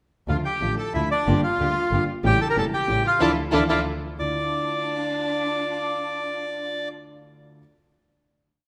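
Passionate and tense, this complete tango piece moves at 185 BPM in waltz time, with a rubato feel in D harmonic minor. A reedy, bright bandoneon sits up front with a motif-based melody in period phrases, partly doubled in octaves. Beneath it, a dark, woody violin section plays a bowed second line with vibrato and octave doubling. A warm concert grand piano, intimate and vintage with audible action noise and deep bass, carries the accompaniment with the accent on one. It is joined by veiled, muted string stabs in the background and by a distant, floating bowed double bass played sul tasto. The harmony moves from Dm through Gm7 and A7 to Dmadd9, with a band accent at 3.2 s and a final chord from 4.2 s. The bass drops out first, and the piano rings on alone after 6.9 s in a moderate concert hall reverb.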